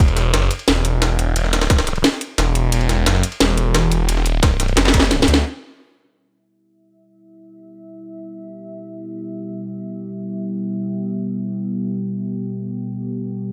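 A swirling, thick detuned saw bass anchors this excerpt of dark technical drum and bass, its phaser-treated, saturated tone pumping against the beat over Esus2 and then Em chords. Mechanical and aggressive, the opening is driven by an overdriven, up-front drum kit with a cracking snare and bright hats, reinforced by a tight, overdriven electronic kick that drops out at 1.8 seconds and returns briefly near 4.4 seconds. Underneath, a gritty, pitched-up sampler-style jungle kit adds compressed hi-hats, ride and a medium-tuned snare, all high-pass filtered. A drum fill at 4.8 seconds closes the first part, after which the beat and bass fall away. From 7.6 seconds a deep, moody pad with a slow attack and long release moves through a filter sweep, its chorused, reverberant sawtooth layers and sub octave pumping in a digital ambience.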